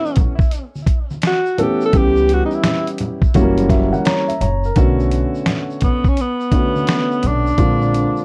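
A breathy tenor saxophone opens this smoky, nocturnal jazz-hop cut alongside a dark, intimate grand piano, with the horn taking a solo full of subtone, vibrato and scooped notes, softened by analog delay. A gritty, compressed sampler-style drum kit of hi-hat, thumpy kick and fat snare sits up front with a lazy swing, while a soft-handed tube shaker and congas add a band-limited, vintage layer underneath. A woody, pizzicato upright bass on gut strings joins at 1.9 seconds, anchoring the low end beneath the piano's audible action noise. The piano slips in a fill as the saxophone solo closes, leading into the second section at 4.8 seconds, where minor seventh and dominant ninth harmonies keep the mood hazy. Light reverb and a cassette tape character give the whole fragment a dusty late-night sheen.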